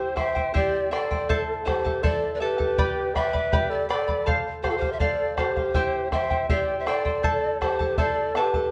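An airy, close-miked pan flute carries the melody over a shimmering, fingerpicked charango, while a bright, reedy large quena plays a second line beneath it, all opening this festive yet melancholic Andean folk passage in A minor at 81 BPM in 2/4. A round bombo joins at 0.2 seconds, and the chords move from C through A minor, G and F before returning to C and A minor. A moderate recital-hall reverb adds space, and the passage is cut from a longer piece.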